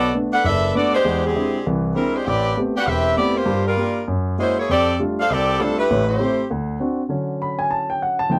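A saxophone section and a grand piano open this brief, energetic jazz fragment together, swinging in 4/4 at 198 BPM. The saxophones carry the brassy melody up front as a bright ensemble, their soft attack and light vibrato giving the line a smooth sheen. Beneath them, the warm piano supplies accompaniment through a quick chord sequence that moves from Bm7 and E7alt through Am9, Gm7 and F#9 before settling on F69, then turns through Am7 and D7. The saxophones drop out at 6.5 seconds, and from 7.1 seconds the piano carries on alone, landing on Dmaj7 as the clip cuts off. The close, dark-toned room lends the performance an intimate, booth-like presence.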